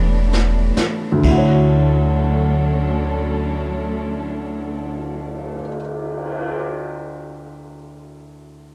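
A dark, close-sounding production with little reverb frames this tender, romantic jazz ballad fragment at a slow swing. A boxy, intimate upright piano sits up front with audible action noise. Alongside it play a lush bowed string section with vibrato and portamento, a thumpy pizzicato upright bass, and a distant, roomy brush kit, whose drum fill opens the passage as it slows before settling from A9sus4 onto Dmaj7 at 1.2 s. Strings and bass stop at 5.6 s and the drums at 6.6 s, leaving the piano's long sustain to ring alone.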